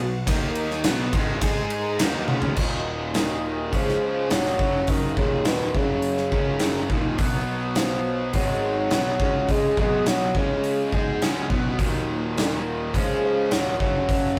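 A straight, driving 4/4 groove powers this swaggering classic rock fragment, led by an up-front gated 80s drum kit that enters at 0.3 seconds with a punchy kick, a medium-tuned snare, bright cymbals and toms in an airy stone-room sound, adding a fill just before the main section arrives. Two distorted electric guitars, one overdriven and one tight, play picked riffs in the background, while an overdriven fuzz bass supplies a dark, round low end. A very quiet picked twelve-string acoustic guitar shimmers with octave-doubled brightness, and a string machine set to cellos holds soft, slowly evolving sawtooth chords with ensemble chorus. A worn, reedy electric piano, slightly out of tune, appears only briefly and stops at 2.5 seconds. From 3.2 seconds a mellow bassoon takes the solo melody with light vibrato and a vintage, classical character, all set in a rough rehearsal-room recording with moderate ambience and warm saturation.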